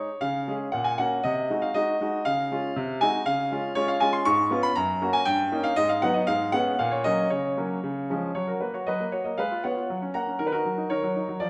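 A bright, up-front concert grand piano plays alone in this elegant, graceful classical-period sonatina in a straight two-beat metre, its brilliant treble and deep bass ringing with long sustain in a moderate recital-hall reverb, moving through a sequence of chords before a new section begins at 8.4 s in a fragment cut from a longer piece.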